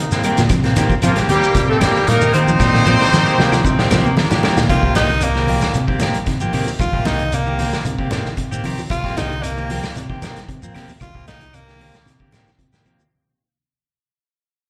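A straight 4/4 afrobeat groove, funky and intense, rides on a punchy vintage drum kit, a round, dark fingered dub bass, thick low-tuned congas, grainy shekere and faint woody claves, with bright picked guitar stabs over very quiet fingered arpeggios from a mellow electric guitar, while a tight, clear horn section carries the opening melody alongside a whispered trumpet line, joined near 2.9 s by a gritty baritone saxophone, before a raspy, forceful tenor saxophone solo takes over from 4.7 s as the piece fades, the whole captured as a live gig through the venue's PA in a reverberant hall with lossy compression artefacts.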